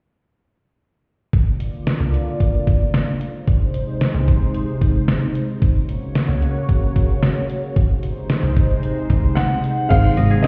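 Synth-pop with a nostalgic, bright mood, heard as a short cut from a longer piece: a detuned 8-bit drum machine with a thumpy kick, tape-warm tone and crash cymbal, hi-hat, snare and toms starts at 1.3 seconds, and a swirling, airy sawtooth pad with phaser and chorus joins up front, holding sustained chords that move from Bb to Ab to Gb and back to Ab. A clear grand piano with audible action noise adds a brief melody at 9.4 seconds. At 9.9 seconds a punchy, round FM bass, a warbling vintage FM electric piano in the background and woody fingerpicked koto arpeggios come in, and the whole mix sounds muffled, as if heard through a wall, with a stone room reverb.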